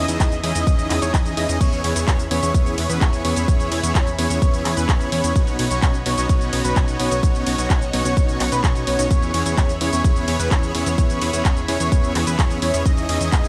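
Festival progressive house with an uplifting, anthemic mood, this cut from a longer track has a huge, compressed supersaw riff, a bold, nasal unison lead playing arpeggios, and a fat analog bass, all pumping against the sidechain, with tape echo trailing the riff and the lead. A lush, brilliant pad with slow attack, chorus and phaser holds sustained chords in the background over a progression moving between C#madd9/E, E6 and Badd9. A punchy, up-front electronic kick enters at 0.2 seconds, just after a house kit of crash, handclaps, brilliant hi-hats, ride and shaker, and both carry studio reverb in an otherwise fairly dry, loud mix.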